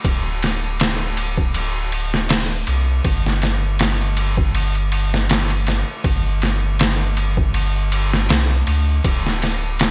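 A slow, lightly swung trip hop groove on a pitched-down, muffled sampler-style kit, with a thumpy kick, medium-tuned snare, hi-hat and ride, overdriven and pushed up front, is joined by a deep, round sine sub bass that sits from D1 to D2, giving this dry, dark and smoky fragment of a longer piece its mellow, sustained low end.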